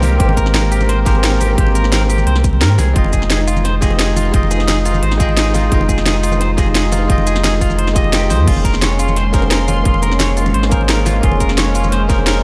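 A straight 4/4 groove at 174 BPM drives this lush liquid drum and bass excerpt: a tight, tape-warm electronic kick enters at 0.2 s beneath a layered kit of cracking snare, crisp hats, shaker and crash cymbal, while distant hard-handed congas and bongos sit in the background and a deep, up-front sine-and-triangle sub bass with octave anchors the low end; above them, a bell-like tine electric piano with analog delay, a smooth, detuned sawtooth pad with chorus and sidechain pumping, and a clean, scooped semi-hollow guitar picking arpeggios through harmonic tremolo and delay move through Abmaj9, Fm9 and Bbm9/F chords.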